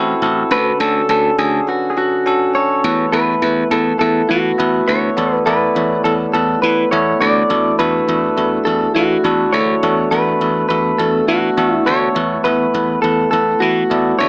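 A warm, slightly broken-up electric guitar played through a small old amp carries the melody up front from 0.5 seconds, its picked, compressed tone singing over a bell-like tine electric piano and a punchy, growly slap bass in this romantic, nostalgic 1980s-style pop cut. Moving at 103 BPM in a straight 4/4, the piano's clean, direct chords drift from Am6 and Dmaj7 into a suspended Esus4 at 2.8 seconds, then through Dadd9/E and Bm7/E before settling back on Esus4. Light reverb and digital ambience wrap the mix in a small-speaker sound.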